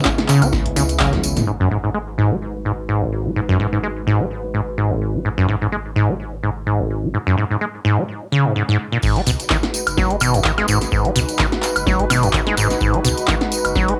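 Swung sixteenths at 127 BPM drive this gritty acid house cut in G# minor, where a squelchy, resonant sawtooth acid bass riff sits up front with a filter sweep from 1.5 to 9.0 seconds over a thick, saturated triangle sub bass and a detuned, warbling vintage pad on C#m7 and G#m7, while a deep, tape-warm electronic kick, a punchy analog drum machine of snare, handclaps, hi-hat, toms, woodblock and crash, and a jingly, close tambourine play the opening drop with a drum fill at 1.0 seconds and return at 9.0 seconds, all in a small, damp room on home cassette.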